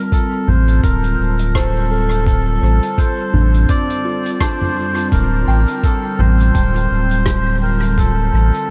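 A warbling, nostalgic pad of detuned square and triangle tones opens this hazy ambient dub fragment, holding a single chord with a slow attack and long release, softened by chorus and its own reverb. Alongside it, a soft FM synth bell traces gentle, pure arpeggios in the background, its chorus and diffuse ambient delay keeping it mellow and faint. A reedy, breathy melodica carries the melody from 0.1 s, dark and nasal, roughened by vintage 12-bit sampler grit and sent through dub echo. A compressed, muffled electronic kick thumps with sampler-style weight, while a distant, roomy soft-mallet kit of hi-hat, rim click and toms sits low in the mix with its own dub echo, all over a lazy swung groove. From 0.5 s a round, sine-based sub bass sits up front with a fast attack and long sustain, giving the deep, lo-fi haze a steady floor inside a small, lightly reverberant room.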